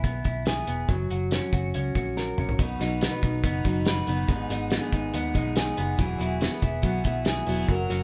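Jangly indie pop at 141 BPM with a bright, nostalgic mood, cut from a longer piece: twangy, slightly broken-up electric guitar arpeggios from a small old amp sit up front over a round, foam-muted fingered bass and a cloth-damped, thuddy drum kit with a fat snare and gritty, saturated character, a drum fill at 2.2 seconds leads into a full-bodied picked steel-string acoustic guitar entering at 2.6 seconds, and the chords move from E through F#, B and G#m to Eadd9 as the band plays live together in a moderate stone room.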